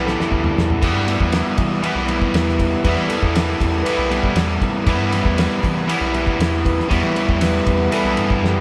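Recorded as a band playing live in one room with moderate studio reverb, this brief cut from a longer psychedelic rock piece sits on a single E minor chord at 118 BPM in a straight 4/4, dark and trippy in mood. A reedy, vintage overdriven combo organ with spring reverb carries a solo throughout, while a bright, double-tracked crunchy guitar riff sits up front over a round, deep dub picked bass. Cloth-damped, thuddy drums with a fat snare, tight kick and rolled-off top open with a fill from 0.0 to 0.8 seconds and close with another at 8.4 seconds, and very quiet, low-tuned congas add soft hand percussion underneath.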